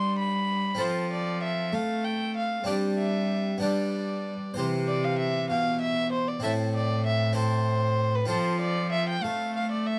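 Classical in a renaissance-style consort manner, this brief dance in a straight 6/8 feels festive and stately, cut from a longer piece. A single violin carries the melody high above the ensemble with an airy bow and a nasal, reedy gut-string tone in period style. Beneath it, one cello supplies the bass with a rich sound and light vibrato, its gut strings giving a similar period colour. A French-style harpsichord with two sets of strings fills in the accompaniment with a full, plucked texture. All three play from start to finish, up front and closely captured, with little reverb, so the recording sounds dry and detailed as the same opening phrase returns at 4.6 seconds over a fresh turn of harmony.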